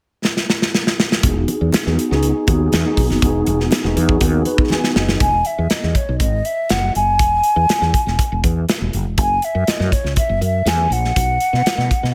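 A glossy, lightly reverberant studio sound frames this upbeat, polished 1980s jazz-funk pop excerpt in E major at 121 BPM. A tight, up-front acoustic drum kit with gated reverb opens with a fill. A growly, round fretless bass with analog chorus and a mellow, clean tine electric piano with ensemble chorus then enter at 1.2 seconds over an Emaj9 chord, and faint, close, dry congas join shortly after, adding bright touches. From 5.2 seconds a pure, hollow concert flute with soft attack and gentle vibrato takes the melody, and the electric piano plays until 9.2 seconds as the harmony moves through F#7(no3) toward B5.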